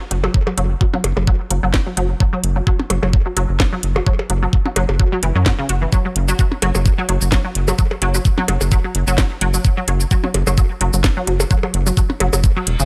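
Minimal techno at 129 BPM with a light swing, this quirky, clinical excerpt is built on an up-front, knocking electronic kick, a garage drum kit with a cracking snare, metallic hats and shaker, and percussion blips trailing digital delay. A rubbery, hollow square bass bounces underneath with sidechain pumping, while a juicy, squelchy blip pluck carries the riff through ensemble chorus, tape echo and its own pumping. The mix is dry and close, and a brief reverse cymbal rises in at 12.6 seconds as the cut ends.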